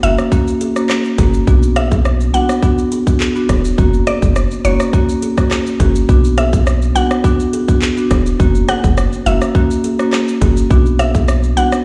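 This bouncy, hypnotic dancehall excerpt at 104 BPM in B harmonic minor opens with everything at once: a tight electronic drum kit with kick, metallic hi-hat, handclaps, rim click and shaker, a deep sub bass with a pitch-drop attack, and a dark, smooth marimba up front, all cycling between F# and B minor. Above them, a woody, round synth pluck carries the melody, its mellow tone thickened by chorus and digital delay, while high-tuned acoustic bongos, struck with hard hands, sit in the background. The whole track sounds as if played on a big sound system in a bare room, with a large studio reverb.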